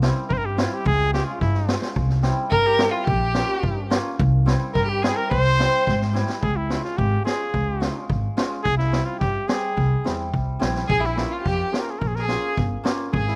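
Klezmer in 2/4 at 108 BPM, festive and soulful in C phrygian dominant, this cut from a longer piece is led by a punchy, smooth-topped cornet in classical style, with a single bowed violin joining on a second line at 2.5 s, full of vibrato and portamento. Underneath, a bright, shimmering hammered dulcimer rings out the accompaniment, a woody, thumpy pizzicato upright bass on gut strings holds the low end, and a street-band drum kit with a high-tuned snare and boomy kick plays a fill at 5.9 s into the second section. The cornet, violin and dulcimer carry a short slapback echo, and the whole piece has a dry, close outdoor sound.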